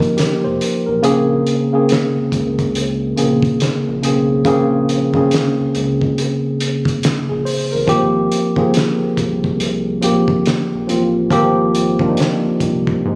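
Captured on a phone in a small room, the recording has a light, close reverb and a compressed, lo-fi intimacy. This is a soulful, smooth slice of neo-soul R&B cut from a longer piece, moving at 70 BPM in 4/4 with a swung sixteenth-note feel in Bb dorian. Up front, a worn, slightly out-of-tune tine electric piano carries the accompaniment with a clean, direct tone, moving from F9sus4 to Bbm9 and settling on Abmaj13 at 7.9 seconds. The cloth-damped acoustic drum kit sits close as well: muffled and gritty with a rolled-off top, it pairs a fat snare and hi-hat with a tight kick that is muted between 1.0 and 1.9 seconds. Entering at 0.2 seconds, a rubbery, hollow square bass with a bouncy filter pluck and a dark, saturated edge sits in the background beneath the keys.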